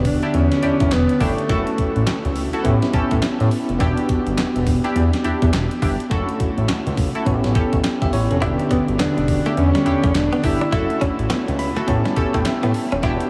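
A dreamy, reverb-soaked mix carries this confident, bouncy new jack swing R&B cut at 104 BPM in E dorian, with swung sixteenths over an Em7, F#m7 and A7 cycle. Up front, a crisp 8-bit drum machine punches out a thumpy kick, snare, hi-hat and handclaps beneath a fat, detuned sawtooth analog bass, while a bell-like tine electric piano with tube saturation comps throughout and funky polysynth stabs add chorus and tape echo. A dark alto saxophone with vibrato and scooped notes sings short jazz-style phrases through tape echo, returning at 8.7 s, just after a clean, direct-recorded electric guitar slips into the background with a bright picked riff at 8.4 s; the electric piano closes with a fill from 11.3 s.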